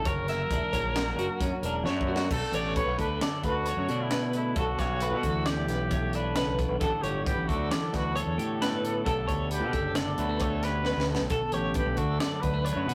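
Restless and wistful, this math rock and midwest emo passage moves at 133 BPM in 5/4 and B minor. A breathy, whispered trumpet carries an intimate vibrato melody over two clean, compressed twelve-string electric guitars, one warm on accompaniment and the other bright and twangy with tremolo on picked arpeggios, while a growling, overdriven fingered bass sits up front. A crisp fusion kit with a high-tuned snare and punchy kick adds fills at 1.9 and 10.9 seconds as the harmony travels from F#7b13 through Bm7, Em11/B, A13sus4 and Gmaj9, and light reverb with saturation lends a rough rehearsal-room feel.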